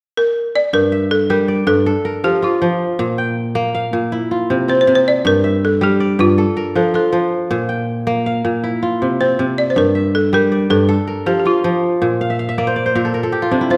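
A dark, reverberant recital-hall sound surrounds this flowing, reflective excerpt of West African traditional music in G Dorian, moving at 106 BPM in a straight 12/8. A woody, buzzing balafon played with hard rubber mallets carries the melody from 0.2 seconds, close-miked and full up front, while a ringing, crisp, fingerpicked kora enters at 0.7 seconds with arpeggios over a repeating Gm, F, Bb5, C cycle. Near the end, the kora adds a fill at 12.2 seconds as the chords fall away.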